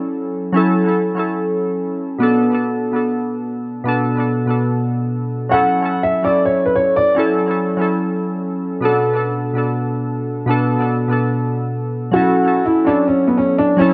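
Glassy, wave-folded digital keys open this tense, dark hip hop fragment alone, their chorused, fast-attack tones decaying over a filter sweep in a half-time feel as the harmony moves between minor seventh chords. At 5.5 seconds a woody, boxy upright piano enters up front with an intimate melody, its action noise audible and its notes carrying long sustain. The piano falls away at 7.1 seconds and returns at 12.1 seconds, all within a lush hall reverb and a dark, warm production.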